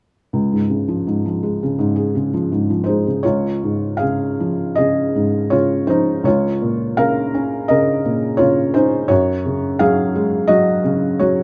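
Tender and peaceful, this brief excerpt of lyrical classical solo piano moves with an uneven, rubato feel as a felt-muted upright, soft, mellow and intimate with short sustain, sits up front in a dark production with light reverb, playing alone from 0.3 to 11.4 seconds over chords that move from Db to Bbm/Db and settle on Gbsus2.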